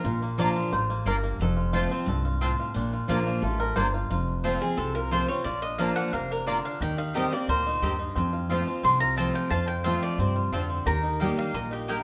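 A twangy, percussive five-string banjo opens this driving, joyful bluegrass passage with a solo, backed by a bright, full-bodied picked dreadnought guitar up front and a thumpy, woody upright bass plucked on gut strings. At 0.4 seconds a mandolin adds picked stabs with a woody tone that sits forward in the mix, and the tune moves along at a brisk 177 BPM in straight 4/4, in Bb major, tuned slightly below standard pitch at A4 = 436 Hz. At 4.6 seconds a second mandolin takes the melody with a warm, round, double-strung voice, over changes that move between Bb, F and Eb. At 9.5 seconds a lap resonator guitar slips in a metallic, nasal slide line played with fingerpicks. A moderate large-studio reverb gives the ensemble a roomy glow, and the recording is a section cut from a longer piece.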